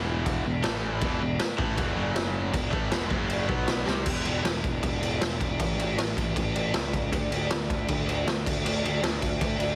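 Angry, aggressive punk rock at 157 BPM in a straight 4/4, cut from a longer piece, where two bright guitars, one overdriven and compressed, the other tightly distorted and set back, hammer a power-chord riff through E5, A5, F#5, B5 and C5 until they stop at 4.1 seconds, leaving a growly, fuzz-drenched picked bass and a boomy, gritty garage drum kit with crash, kick and snare, entering at 0.3 seconds and marked by a fill at 3.9 seconds, to drive on through an A chord, all squeezed into a dry, heavily compressed radio sound.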